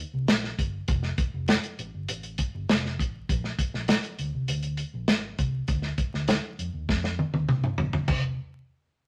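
A moderate studio reverb and a layer of vinyl crackle frame this short cut from a longer uptempo 1960s-style soul piece, its tuning set slightly sharp at A4 = 441 Hz. At 100 BPM in a straight 4/4, the mood is driving and urgent. A dry, dark soul drum kit sits up front with a tight kick, a medium-tuned snare, hi-hat, toms and dusky crash cymbals, its rolled-off top giving it a smooth, warm character. Beneath it, a vintage muted fingered electric bass enters at 0.1 seconds, round and punchy with an amped, foam-muted tone, moving between F1 and F2. The drums close the passage with a fill from 6.9 to 8.1 seconds before the kit stops at 8.2 seconds and the bass at 8.4 seconds.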